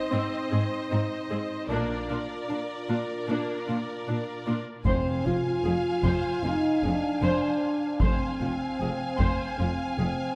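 Mellow French horns hold sustained chords from the start of this dramatic, epic orchestral film cue in F dorian at 76 BPM, over a clear, distant violin second line, expressive violas with portamento and rich, close cellos, while focused double basses join at 1.7 s as the opening build-up moves from Ab to Bb. At 4.8 s a close, dry taiko ensemble struck with heavy sticks and round soft-mallet timpani in the background arrive alongside a lush violin melody with a soft attack, as the harmony settles on Fm. Moderate concert hall reverb surrounds the orchestra in this passage cut from a longer piece.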